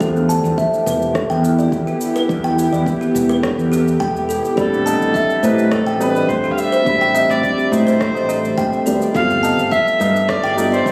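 A straight 4/4 pulse of deep, layered electronic kick with shaker and rim click drives this mystical, earthy organic downtempo excerpt, where woody, thumb-plucked kalimba arpeggios with tape echo sit up front over a round, dark fretless bass and a tense, sawtooth-edged drone roughened by 12-bit sampler grit, both pumping with sidechain, until at 4.6 seconds a biting, bowed kamancheh melody with portamento and delay enters alongside a felt-muted, boxy upright piano and a bright metallic singing bowl, with high-tuned, dry tabla joining at 4.7 seconds, the mix sitting in light reverb as if captured on a phone in the room.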